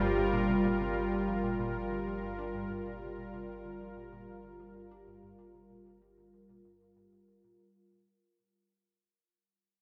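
Hypnotic and cosmic, this short cut of sequencer-driven space music in G minor moves at 95 BPM in a straight 4/4, resting on a single Gm7 chord. Up front, a bright, resonant pad built from detuned sawtooth and triangle tones with ring modulation holds sustained chords through slow filter swells and chorus. Behind it, a tight, driving sequenced synth riff with a plucky filter and tape echo runs over a round sine sub bass, with a wet plate reverb giving the dark production its depth as the piece fades out across its 7.6 seconds.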